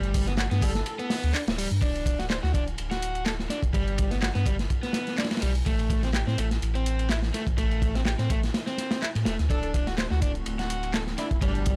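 Breakbeat cut from a longer piece, gritty and funky at 125 BPM with a light 16th-note swing, built on a crunchy, dark-cymballed breakbeat kit with a tight kick sitting up front beside a deep, thick, saturated sub bass, while an overdriven electric guitar riff with tube saturation and tape echo runs throughout over a punchy analog drum machine's handclaps and hi-hat, a very quiet swirling phased pad holds sustained chords only until 1.8 seconds and returns at 10.1 seconds, and a catchy detuned unison lead with an old-record sound and tape echo flickers briefly near the start before returning at 9.5 seconds, all in a dry, gritty small-room recording moving from Gadd9 through D, G and Am to D7.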